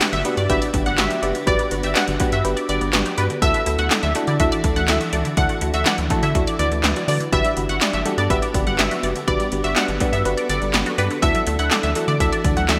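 A short cut from a longer synth-pop piece opens with gated-reverb electronic drums up front, punchy kick, gated snare, handclaps and metallic hi-hats, alongside a soft, round FM electric piano treated with chorus and phaser and a cloudy granular pad sitting very quiet beneath. At 123 BPM in a straight 4/4, the mood is upbeat yet wistful, moving between Gmaj7 and Dadd9. From 0.1 seconds a rubbery, hollow square-wave bass bounces along in the low register, while a bright, funky polysynth comp with chorus and digital delay adds a warbling vintage second line. In the background, a juicy, squelchy resonant pluck spins arpeggios through chorus, phaser and digital delay. The whole is bathed in a lush hall reverb with a bright 1980s-style digital production sheen.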